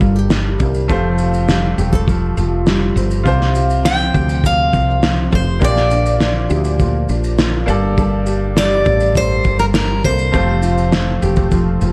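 A light reverb surrounds this short acoustic pop cut, and lossy compression artefacts give the sound a slightly smeared edge. The mood is carefree and sunny, moving at 102 BPM in a straight 4/4 over a progression of Gmadd9, Fadd9, Csus4 and Bb6 chords. Up front, a muffled, cloth-damped drum kit with a fat snare, tight kick, shaker and gritty saturation sits beside a round, punchy fretless electric bass with a dark, hollow tone and analog chorus. A double-tracked nylon-string guitar adds a full-bodied, thumb-plucked accompaniment on old strings, while a brilliant upright piano rings out with long sustain through plate reverb. At 3.9 seconds a picked dreadnought steel-string acoustic guitar enters with the melody, placed up front and carried by plate reverb and tape echo, and it plays through to the end at 11.9 seconds.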